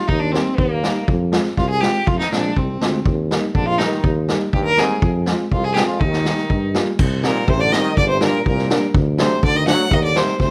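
A rich, smooth bowed violin leads this bittersweet yet festive klezmer excerpt, singing up front with vibrato in a straight two-beat feel. Underneath, a mellow vintage tuba anchors the bass with soft attacks and scooped notes, while a street-band drum kit in a small room adds a boomy kick, a medium-tuned snare and dark crash cymbals. A woody, boxy upright piano fills in the accompaniment, its action noise audible and intimate. At 3.5 s a brilliant, forceful trombone with a plunger mute joins on a jazz-style second line, its wah-wah tone punchy. At 7.0 s the tune moves into a second section as the key shifts from Eb major to C dorian with a raised fourth, and the close, detailed sound carries only a light reverb.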